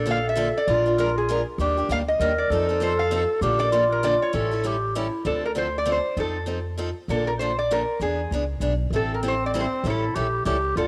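Swinging and fiery, this jazz manouche excerpt runs at 196 BPM in a swung 3/4. A metallic, nasal lap resonator guitar carries the slide melody up front, played with fingerpicks. Beneath it, a bright, boxy parlour steel-string guitar picks the accompaniment with fresh strings, and a woody, thumpy gut-string upright bass is plucked with transformer saturation. A raspy, growling clarinet with vibrato supplies a gritty second line from 0.0 to 5.2 seconds and returns at 8.9 seconds; the clarinet and steel-string guitar carry a cassette-tape tint, all inside a small, lightly reverberant home room.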